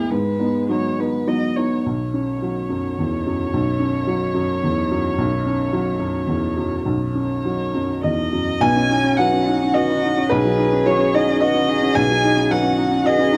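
Lightly reverberant, this fragile, longing neoclassical excerpt unfolds with rubato in three, setting a veiled, con sordino violin melody with vibrato over a dark, distant muted cello line with portamento, each bowed by a single player alongside a woody, boxy upright piano placed up front, until at 8.6 seconds a very quiet, reedy pedal harmonium breathes sustained chords and a ringing, metallic vibraphone, struck with soft mallets and its motor off, adds mellow arpeggios in the background.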